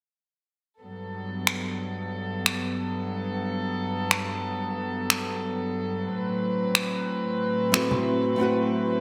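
Bright, 1980s-style digital production bathes this smooth, relaxed sunset chillout excerpt in a lush hall reverb, giving it a polished studio sheen. At a straight 91 BPM in 4/4, a chamber string section opens at 0.8 seconds with sustained, bowed chords that feel pure and floating, soft in attack yet distant despite sitting up front. Electronic finger snaps join at 1.5 seconds, layered and clearly produced, their gated reverb adding a crisp, stylized snap to the groove. The harmony rests on Gmaj9 before moving to Am69, keeping the mood gently suspended. Near the close, at 7.7 seconds, a fingerpicked nylon-string guitar steps forward with a dark, woody, deep classical tone from old strings, trailed by delay, while congas with soft hands add a brief, vintage, band-limited touch in the background.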